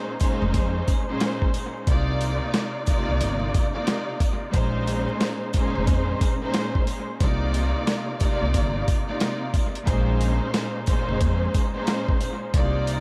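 A gritty, overdriven sampler-style drum kit with a thumpy kick and medium-tuned snare sits up front in this moody, reflective boom-bap hip-hop groove at 90 BPM with swung 16ths, entering just after a bowed studio string section full of vibrato and portamento, filtered and touched with dub echo, alongside a woody, dark pizzicato upright bass and jingly sleigh bells in the background, all moving between Bbm11 and Cm11 in a small-room, echo-heavy mix dusted with vinyl crackle.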